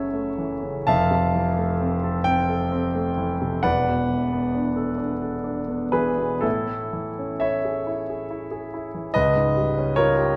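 Luminous and dreamy, this brief impressionist classical fragment for solo piano drifts at a slow 43 beats per minute in 6/8, its beats uneven and pulled by rubato. A warm concert grand, up front and intimate, ranges from a deep E1 bass to A5, its long sustain and polished tone carrying audible action noise through a moderate concert hall reverb. Lush seventh and extended chords such as F#m7, Fmaj7 and E9sus4 open the passage before it shifts at 6.4 seconds toward Amaj7 and a closing C#7#11, cut from a longer piece.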